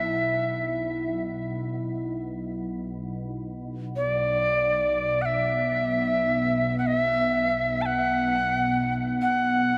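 Meditative and spacious, this free-time world meditation piece in B minor pentatonic is cut from a longer piece and unfolds over a huge, wet ambient reverb. Up front, a Native American-style cedar flute carries the melody from D5 to A5 with an airy, woody tone, a soft attack, chiff, vibrato, an unsteady quality and rolled-off highs, trailed by delay. Beneath it, a glassy, ethereal glass harmonica adds a beating texture between B3 and E4, while a soft, organ-like pad holds a detuned, chorused drone on B1 throughout the 9.8 seconds.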